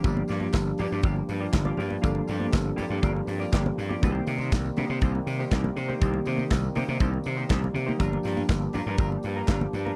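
Disco in G minor at 121 BPM, this short excerpt from a longer piece has a driving, sultry feel in a straight 4/4, moving from Gm7 to Cm7 and back to Gm7 at 8.0 seconds. The modern studio drum kit sits up front with a punchy kick, a medium-tuned snare, hi-hat and handclaps, its sound airy and polished in a small room. Just as prominent is a gritty slap bass, growly and overdriven yet bright, running from G1 to C3. A clean electric guitar, dark and scooped with a lush chorus, adds accompaniment, while a mellow tine electric piano and a smooth-topped French horn section holding sustained chords with light vibrato sit in the background. High-tuned, damped congas and a jingly tambourine add very quiet percussion, all captured in a dry, close 1970s-style studio sound with little reverb.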